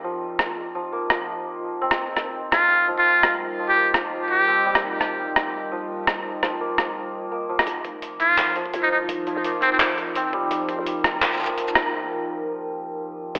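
Bathed in a lush hall reverb and filtered through a telephone-like band, this cinematic, spacious half-time drum and bass cut runs at 169 BPM over an F5 chord. A dark, detuned analog pad pumps beneath shimmering santur arpeggios, while a gritty, overdriven boom bap kit of handclaps, hi-hat, rim click and shaker sits up front, and a brilliant, breathy muted trumpet enters at 2.5 seconds with scooped, jazz-style solo phrases. At 7.7 seconds a growling 808-style bass in the background and a knocking electronic kick arrive to drive a build-up that opens into a break at 11.9 seconds.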